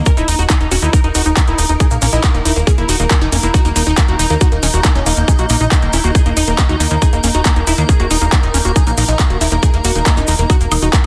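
Hypnotic and psychedelic, this psychedelic trance excerpt is driven by a tight, up-front electronic kick, an overdriven big-room kit of handclaps, metallic hi-hat and woodblock, a grainy tube shaker, and a punchy, funky analog bass with a detuned filter pluck. Above them a detuned supersaw stab carries the melody through phaser and digital delay, while a squelchy, resonant acid bass riff grinds in the background with distortion, cassette tape colour and dub echo. A swarming, tense drone and a blurred granular cloud pad hold sustained chords and texture in the background, with a very quiet electronic swell arriving at 9.8 seconds in a dense, heavily limited mix.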